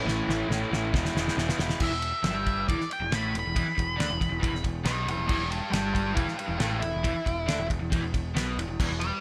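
A raw, overdriven, double-tracked garage guitar riff opens this rowdy garage rock excerpt at 137 BPM in a straight 4/4, joined at once by a growling, bright picked electric bass driven through tube saturation and a cloth-damped, thuddy acoustic drum kit with a fat snare, tight kick and dark, rolled-off cymbals playing a fill, before an octave-fuzz lead guitar with distortion takes a solo from 1.8 seconds, the guitars and drums sitting up front, the kit in a small room, all under light reverb.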